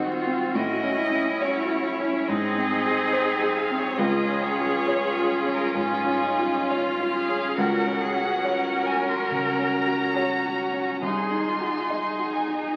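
A focused violin sings a lyrical, rubato melody in this warm romantic movement for piano quintet, carried by a second violin, an expressive cello with soft attacks and portamento, an intense, clear-toned viola and an up-front, natural-sounding baby grand piano, all bathed in recital hall reverb under the crackle of a very old 78 rpm record.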